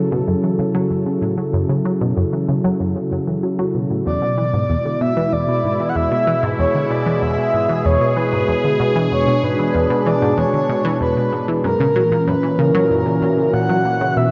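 A sweeping, airy resonant pad of detuned sawtooth chords with chorus sits up front in this mysterious, hypnotic stretch of ambient, sequencer-driven space music at 95 BPM in 4/4, moving through F#m7, E and F#7 over a tight, driving sequenced synth riff with a filter pluck, phaser and delay, while a breathy, flute-like synth lead with tremolo, vibrato and delay enters at 4.1 seconds, the whole set in a wet plate reverb.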